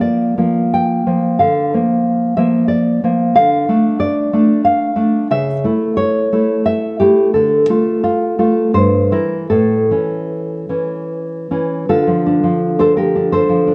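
The recording is dark and warm, set in a moderate recital-hall reverb that lets each note bloom briefly before fading. A solo nylon-string guitar sits up front, its deep classical tone rounded by thumb-plucked notes and the occasional finger squeak on the strings. This passionate, melancholic romantic piece moves in a flexible three-beat lilt, pushing and pulling through rubato phrasing across a range from low G2 to high G5. The harmony opens on Bb before settling into D minor at 3.4 seconds, then passes through darker diminished colour and a tense A chord before resolving back to D minor at 11.9 seconds. That return marks the start of a new section, and the fragment breaks off soon after at 13.7 seconds, clearly cut from a longer work.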